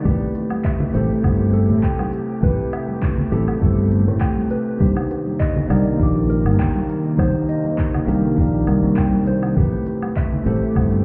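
A growly, up-front fretless electric bass with analog chorus anchors this relaxed sunset chillout excerpt alongside a bell-like tine electric piano with digital delay, a breathy, warbling pad with chorus in the background, and a dark, clean electric guitar playing delayed arpeggios. A soft, tape-warm electronic kick and a smooth deep house kit with cabasa, handclaps, hi-hat and woodblock carry the groove, while very quiet congas and bongos add soft hand percussion. The harmony shifts from Am9 to Cm9 at 4.8 seconds and back at 9.6 seconds, and the whole mix sounds muffled, as if heard through a wall in a reverberant club.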